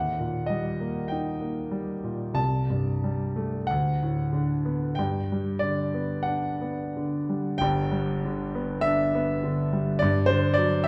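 A slow, rubato pulse of 42-55 BPM in 4/4 carries this dreamy, tender romantic nocturne in G major, a short cut from a longer piece, where a solo concert grand piano, up front with a deep bass and a smooth, vintage tone, ranges from G1 to A5 through chords moving from Eb to Am7/C, D6 and G, with a new section arriving at 7.6 seconds and closing on D7/G at 10.0 seconds, all bathed in the wet reverb of a recital hall and a dark, warm production.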